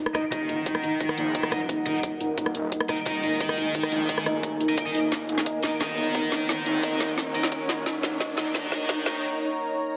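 Futuristic and mechanical, this short cut of dark technical drum and bass at 175 BPM in Eb minor is a build-up over a single Ebm chord, where a quiet riser climbs beneath overdriven, up-front drums with a woody snare and bright hats that break into a fill from 5.1 to 9.2 seconds, a tight electronic kick recorded in a small room sits in the background, and a very quiet, thick detuned saw bass holds the low end, while a soft felt-muted upright piano with audible action noise and 12-bit sampler grit plays delayed arpeggios, a scooped, double-tracked high-gain guitar fires distorted stabs, and a deep, moody ambient pad entering at 0.6 seconds sustains mellow chords, the pad and piano both pumping under sidechain, all set in a moderate plate reverb and a dense, heavily limited master.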